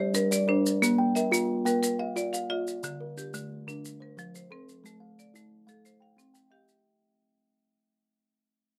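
Hypnotic and gently warm, this short fragment of a longer piece draws on southern African traditional music, built around an mbira-style interlocking cycle in a straight 12/8 feel. A kalimba and a hard-mallet marimba both spin out arpeggios across the same span, from D3 up to G5, sitting close and up front in the mix. The kalimba has a mellow, hollow-box ring from its fingertip plucks, while the marimba's padauk bars sound bright and woody with a crisp, percussive attack. Maracas enter at 0.1 seconds, set lower behind them with a grainy, saturated texture. The harmony cycles through G minor, B-flat, D5, F, A5 and C, and the close, detailed recording with light reverb fades out across the whole passage, ending at 6.8 seconds.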